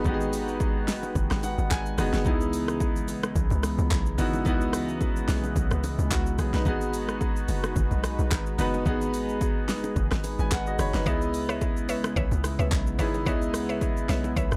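Amapiano at 109 BPM in C# minor with a lightly swung 16th feel, this late-night, soulful excerpt moves between G#m7 and C#m7 over a punchy deep house kit of kick, fat snare, handclaps, rim click, hi-hat and shaker. Beneath it sit a hollow, bouncy log drum bass and very quiet, close congas and bongos. A clear, up-front concert grand piano carries the accompaniment with fills at 1.2 and 10.2 seconds, while a detuned sawtooth analog pad holds smooth sustained chords with chorus and sidechain pumping. From 11.1 seconds a woody, round mallet-like synth pluck adds stabs with chorus and delay, and the mix has a dark production with light reverb.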